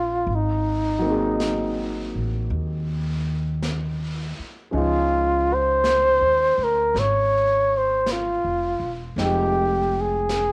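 A breathy, close-miked flugelhorn leads this smoky, intimate jazz ballad at 54 BPM, singing a mellow solo melody with vibrato up front over a concert grand piano with audible action noise and deep bass, and a woody pizzicato upright bass given a touch of transformer saturation. A muffled, gritty brush kit joins at 0.3 seconds, its brushed snare and hi-hat sitting low and lo-fi beneath a lazy eighth-note swing. The chords move from Ab7 to Dbmaj9 to Fm7 in a small, lightly reverberant room, with the horn and piano carrying a cassette-tape softness that gives this fragment of a longer piece its vintage home-recorded feel.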